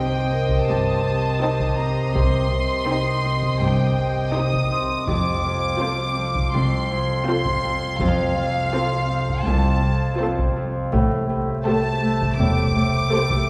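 Heard from further back on a wet scoring stage with a layer of vinyl crackle, this eerie, ominous suspense-film cue at 82 BPM in C dorian, cut from a longer piece, moves from Cm to F to Am7 as a rich violin section carries a soft, sul tasto melody over a very quiet second violin line, a dark viola section, glassy glass harmonica chords, a fingerpicked Celtic harp riff and a metallic, inharmonic drone on C2 with chorus, while a shadowy high violin texture stops at 4.7 s, a ringing hard-mallet vibraphone glints in the background, a close taiko ensemble enters at 0.5 s, and bowed double basses and cellos settle underneath from 0.7 s.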